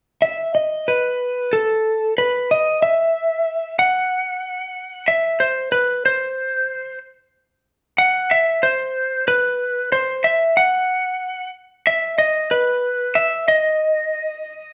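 An up-front electric slide guitar carries the melody between A4 and F#5 from 0.2 to 14.7 seconds, its dark, slightly broken-up, compressed tone shaped by fingerpicks. This brooding yet cathartic rock fragment moves in a straight 3/4 feel. The sound is of a band playing live in one room, bathed in a wet, large studio reverb.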